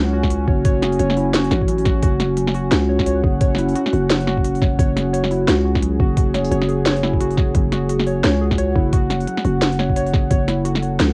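A deep, moody pad of sustained chords, with chorus, reverb and sidechain pumping, opens this spacious, cinematic half-time drum and bass excerpt in F# minor at 174 BPM, alongside warbling, detuned pluck arpeggios with tape echo and a growling, buzzy 808-style bass up front. From 0.2 seconds a crisp, layered electronic kit with a cracking snare and hi-hats enters together with a gritty, overdriven kick that drops out at 10.4 seconds, all over a swung sixteenth-note feel. The lo-fi cassette character and light room reverb give it the dusty intimacy of a home recording.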